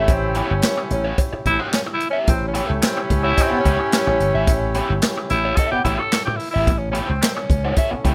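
Energetic and playful, this short funk excerpt finds a raspy, gritty tenor saxophone soloing over a single A9 chord while a mellow, distant horn section carries a second line with light vibrato and octave doubling. A raw garage guitar with wah and overdrive picks out accompaniment, and a growly slap bass through an envelope filter sits punchy and up front. From 0.1 seconds a swinging big-band drum kit joins with handclaps, hi-hat, kick and a medium-tuned snare, all in a rough home demo mix with little reverb.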